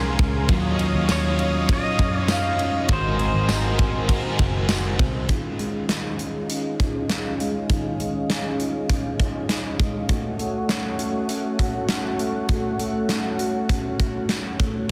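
A straight 4/4 pulse at 100 BPM drives this floating, blissful dream pop in Db major. It is carried by a huge, up-front arena drum kit with a punchy, softly clipped kick, medium-tuned snare, hi-hat, ride and tambourine, over a dark, round, foam-muted picked bass that drops out at 5.3 s. A mellow, clean fingered electric guitar plays arpeggios through chorus, low-pass filter and delay beside a smooth, detuned sawtooth pad with a slow attack, while a crunchy overdriven guitar with tremolo and lush chorus sits in the background until 5.8 s. From 1.1 s a compressed pedal steel guitar adds a brief slide melody with volume swells and delay, as the chords move from Ebm9 and Ab9 to Dbadd9 and Gbm in a dense, heavily limited mix with light reverb.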